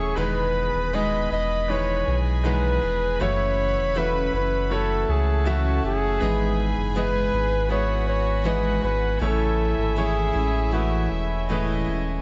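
This pop ballad excerpt moves at an unhurried 79 BPM in E major, with a hopeful, heartfelt mood in a straight 4/4. A close-miked flugelhorn carries the melody with vibrato and a touch of tape echo, singing in a jazz style until it drops out at 11.8 seconds. A floating, sul tasto violin section adds a smooth, bowed second line, while a brilliant, polished grand piano with a short sustain provides the accompaniment. A picked dreadnought acoustic guitar spins full-bodied arpeggios, and soft flute stops on a pipe organ hold sustained chords in the background with a faint chiff. Underneath, a round, sine-like sub bass sits up front, and the whole mix is softened by light studio reverb and a gently rolled-off top as the chords move from Emaj7 to F#m7, back to Emaj7 and on to Amaj7.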